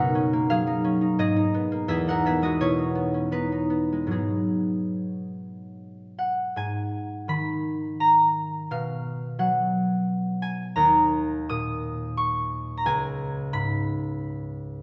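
In a flexible, rubato 3/4 that drifts between 68 and 90 BPM, this gentle, wistful classical passage in G# minor is a solo for concert harp, cut from a longer piece. The bright, ringing harp sits up front, fingerpicked across a span from C#2 to D#6, moving through lush chords such as Bmaj9, Emaj7 and G#m9 before a second section begins at 6.6 seconds and settles on C#sus2 near 12.9 seconds. A moderate scoring-stage reverb lends the notes a soft halo as they decay.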